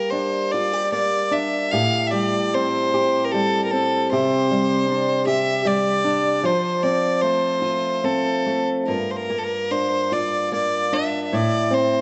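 In a rubato 3/4 at about 75 BPM with uneven, breathing beats, this Celtic slow air in G dorian unfolds with a longing, mournful mood, cut from a longer piece. A single close, earthy fiddle carries the melody up front with light vibrato and an airy bow, while a dark, fingerpicked steel-string acoustic guitar accompanies, its finger squeaks audible, through chords moving from Gm to Am7, Csus2, F and Gm7 before landing on Am. A moderate recital hall reverb surrounds the pair, and the highs are rolled off for a soft top end.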